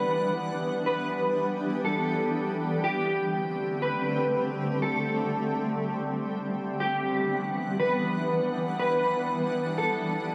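Ethereal and spacious, this half-time hip hop passage in E minor moves at 121 BPM, cut from a longer piece, with a granular cloud pad holding sustained chords from Em9 to D7sus4 and back across the full 10.3 seconds. Its bright, blurred, evolving texture sits up front alongside a dark, slightly broken-up electric guitar melody treated with ensemble chorus and tape echo. A huge ambient reverb with a 4.6-second tail surrounds the sound.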